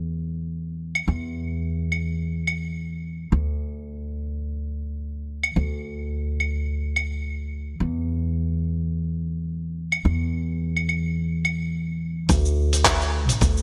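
A woody, up-front upright bass opens this smooth, blissful sunset chillout excerpt, plucked pizzicato on steel strings in a low register. At 1.0 seconds a dusty, gritty soul sampler-style kit joins with claves, handclaps, hi-hat and shaker, compressed and tape-warm with a gated reverb, riding a swung sixteenth-note feel in 4/4. At 12.3 seconds a thumpy electronic kick drum arrives for the closing moments, all within a bright, dry 1980s-style digital sound.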